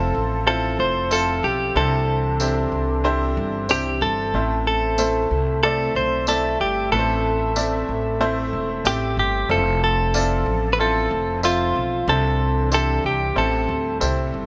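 A lightly reverberant studio sound frames this earnest, driving piano-driven pop excerpt in A minor at 93 BPM, where a clean, compressed, scooped electric guitar carries the melody up front over a brilliant upright piano, a thumpy, woody pizzicato upright bass on gut strings, a very quiet shimmering chorused pulse-width pad holding mellow sustained chords, and a jingly tambourine entering at 1.1 s, over chords of Fmaj7, Cadd9 and Am.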